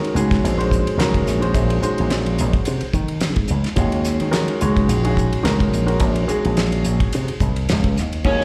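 A swung 16th-note groove in 4/4 at 107 BPM drives this intense electric jazz fusion cut in Eb dorian on an Ebm7 chord: a dry, fat-snared 70s drum kit and a bright, punchy slap bass with an envelope filter sit up front beside a present grand piano with long sustain and slapback echo, before a breathy, mellow jazz flute enters at 8.2 seconds and a biting, overdriven guitar at 8.3 seconds, the sound carrying the feel of a live gig heard through a club PA with club reverb, small-room ambience and a faint mains hum.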